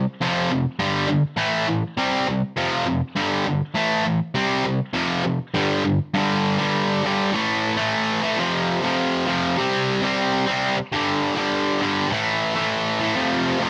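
In a straight 4/4 punk pulse, a lone distorted electric guitar, bright, picked, double-tracked and up front in a moderate studio reverb, drives an angry, urgent cycle of F5, G5, A5 and C5 that changes briskly until about 6.1 s and then moves more sparsely through the rest of this 13.7-second fragment of a longer piece.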